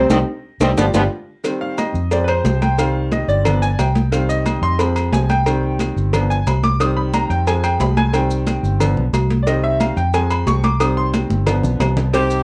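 This salsa excerpt moves at a danceable 180 BPM in C harmonic minor, with a passionate drive. A clear, punchy trombone section opens with a tight band accent over the first second, and a drum fill leads into a long grand piano solo that runs from 1.4 to 12.1 seconds. The bright concert grand sits up front with a brilliant, intimate tone, deep bass and audible action noise, playing over a cycling Cm, Fm and G7 progression. Beneath it, a dark, foam-muted fingered electric bass stays round and prominent. Congas, a low-tuned cowbell, grainy maracas, and ringing metal-shell timbales with agogo bells fill out the percussion, with a second fill near the end before a clear horn section enters at 12.1 seconds. The whole mix carries a worn, warbling cassette-tape character with a small-room reverb.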